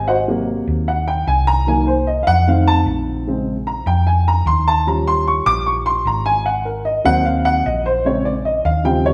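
A dark, woody upright piano takes a lively, sophisticated solo from the opening second, alongside a round, punchy hollow-body electric bass fingered low in the register, both sitting up front in this brief Afro-Cuban jazz passage cut from a longer piece. At 150 BPM in a straight 4/4 and centred on Ab mixolydian, the harmony moves from Ab7 through Cm7b5, F7, Bbm7 and Eb7 before returning to Ab7 and Bbm7. The slightly detuned, boxy piano and the amped bass sound like a band playing live in one large studio, bathed in a generous reverb.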